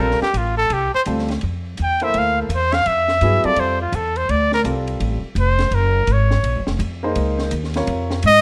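A close-miked trumpet with light vibrato leads a searching, hypnotic modal jazz solo over a swung 4/4 feel, backed by an intimate concert grand piano whose action noise and deep bass are audible, a woody, up-front pizzicato upright bass, and a dry cocktail kit of hi-hat, dark ride cymbal and high-tuned snare carrying vintage 12-bit sampler grit, with a rootless Bbmaj9 shifting to Gbmaj9 at 5.7 seconds, all in a rough home demo mix with light studio reverb, cut from a longer piece.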